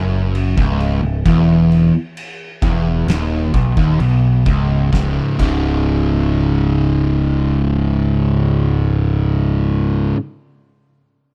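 A straight 4/4 pulse at 65 BPM that slows through its first 4.9 seconds drives this hypnotic, heavy stoner and doom metal excerpt in C# minor, where an up-front, double-tracked fuzz guitar riff with compressed distortion moves from C#m to C#5, a growling picked electric bass adds warm, overdriven weight beneath it, and an oversized low-tuned acoustic drum kit with a punchy kick, fat snare and dark crash cymbals in a bright stone room plays only from 0.3 to 5.7 seconds, all in a dry, close 1970s-style studio sound.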